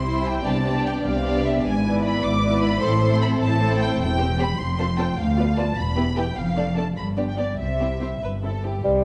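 Heard in a dark, moderately reverberant scoring-stage space, this short cut from a classical-period orchestral movement in 6/8 feels stormy and urgent. The first violins carry the melody high in their range with a smooth, even, vibrato-laden tone that sits distant in the hall, while the second violins play a focused, close inner line beneath them. Violas fill in the accompaniment with a woody, lush colour, and cellos and double basses anchor the bass with rich, bowed weight. The harmony passes through A minor, E minor and D minor before closing on G and then C around 7.6 s. As the violins and violas finish, a solo bassoon appears up front at 8.8 s with a warm, lightly vibrato tone, sounding over the cellos and double basses.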